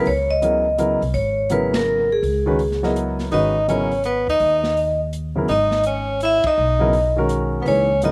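Modal jazz in a swinging 3/4, intense and spiritual, cut from a longer piece: a ringing, metallic vibraphone carries the melody with slapback echo and its motor off, over an intimate baby grand piano whose action noise is audible, a woody pizzicato upright bass and a dark, smooth drum kit with a boomy kick on ride, hi-hat and snare. At 3.3 seconds the harmony moves from C#m11 to G#m11 and a clear tenor saxophone enters with a second line, adding vibrato and subtone. The band hits accents together at 1.7 and 6.4 seconds, and the dry, outdoor sound keeps each part close and distinct.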